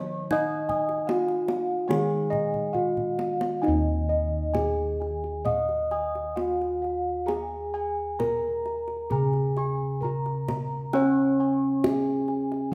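Up front in the mix, low bossed gongs carry the bass with a round, beating bronze tone, anchoring this ceremonial, shimmering Javanese gamelan excerpt in Eb slendro at a moderate 66-82 BPM in straight 4/4. Above them, a padded-mallet bronze metallophone sings the melody in a mellow, soft voice, while a higher metallophone in paired tuning spins arpeggios full of shimmering beats. A second set of bossed gongs adds bright arpeggios of its own. A lower metallophone struck with a wooden mallet supplies an airy, ringing accompaniment at the opening and returns near the close at 10.9 seconds. The tight kendang keeps time throughout and plays a fill from 2.5 seconds that leads into the second section at 3.6 seconds, all set in a moderate recital-hall reverb.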